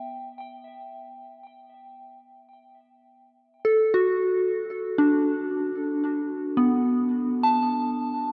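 In free time, this 8.3-second ambient fragment in G major rests peacefully on a single Gmaj9 chord, with a soft, pure FM synth bell playing solo and close from B3 to A5, its fast attack and long release warbling with vintage chorus and tape echo inside a wet cathedral reverb of 5.8 seconds.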